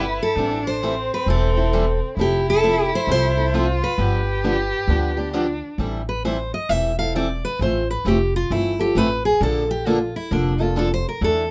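A bright, picked steel-string guitar melody opens this fiery gypsy-jazz swing fragment, joined at once by a bowed violin second line, a parlour-guitar accompaniment and a pizzicato upright bass. The tempo is a lively 133 BPM in 4/4 with a firm eighth-note swing, and the harmony moves through Am7, Fmaj7 and G7. The lead guitar has a crisp dreadnought ring with fresh strings, while the single violin sings in a low register with expressive vibrato, portamento and a smooth top. Beneath them, the accompanying guitar sounds mellow and up front, and the gut-string bass is woody and thumpy. At 5.8 s the violin drops out and the lead guitar takes a solo, now settled in A minor over Am7, Fmaj9 and Bbmaj7. Light reverb gives the small ensemble a touch of room, and the passage breaks off at 11.5 s as part of a longer piece.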